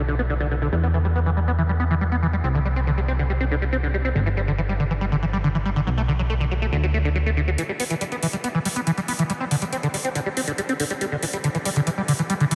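A squelchy, resonant acid bass carries the arpeggios through this emotional, bittersweet uplifting trance excerpt in E minor at 140 BPM, its sawtooth tone colored by phaser, analog chorus and delay, while a punchy, round FM bass holds the low end until 7.6 seconds. From there a metallic, layered electronic hi-hat enters for a build-up over chords moving from Em through Csus2 to G5. The whole dreamy mix is soaked in a huge ambient reverb.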